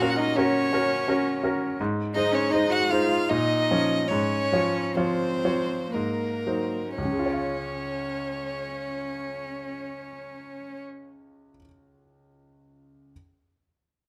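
Tender and serene, this slow romantic movement for piano trio in Db major sways in a rubato 3/4 between 56 and 85 BPM, easing down from 0.7 to 7.0 seconds as a sul tasto violin carries the melody with light vibrato over a cello's airy-bowed second line, both ending at 10.8 seconds while the clear concert grand, with audible action noise and deep bass, accompanies until 13.1 seconds in a close, detailed sound touched by light reverb.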